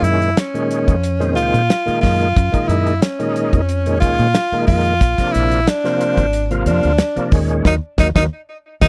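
A tenor saxophone with subtone, vibrato and scooped notes carries the solo melody up front in this funky, bright electric jazz fusion excerpt, moving over Gbmaj9, Bb7 and Ebm7 chords. A gritty, overdriven tonewheel organ with slow rotary speaker and chorus vibrato fills out the harmony, while a deep, round, foam-muted fingered bass and a damped 70s drum kit with tight kick and medium-tuned snare hold a straight groove. The dry, close studio sound keeps every part present, and the band hits an accent from 7.7 seconds to the end at 8.9 seconds.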